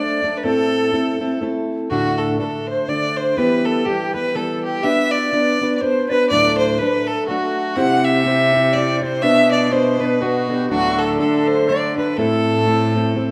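A wet recital hall reverb surrounds this short cut from a longer Celtic folk waltz, a wild, spirited piece in 3/4 at 123 BPM with a swung eighth-note lilt. Up front, a single fiddle carries the melody with a rich, smooth, even bowed tone and light vibrato. Behind it, a wooden flute plays a second line with an airy, straight, tongued sound, close-miked and expressive yet sitting in the background. A fingerpicked, plugged-in jumbo steel-string acoustic guitar provides full-bodied accompaniment near the front, moving through chords such as Am, D, Em and Bm. At 7.8 seconds a bowed cello enters on the bass, adding a reedy, gut-string, period-style depth beneath the others.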